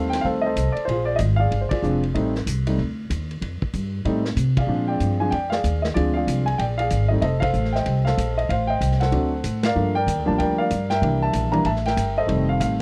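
The warm grand piano carries the melody up front in this relaxed, swinging jazz piano trio excerpt, cut from a longer piece and set in F mixolydian at a brisk 189 BPM in 4/4 with a moderate swing on the eighth notes. Beside it, the pizzicato upright bass sounds woody and growly, its steel strings giving a thumpy, close presence in the low register. The vintage drum kit sits further back, with dark cymbals, a medium-tuned snare, a punchy kick and a rolled-off top, heard across hi-hat, ride, snare and kick in a small-room sound. The trio works through a bluesy progression that moves between F7 and Bb7 before a turnaround through Am7b5, D7, Gm7 and C7, with the whole band hitting accents at 1.7, 4.5, 7.4 and 9.6 seconds. The recording is dry and close, with minimal reverb, in the manner of a 1970s-style studio session.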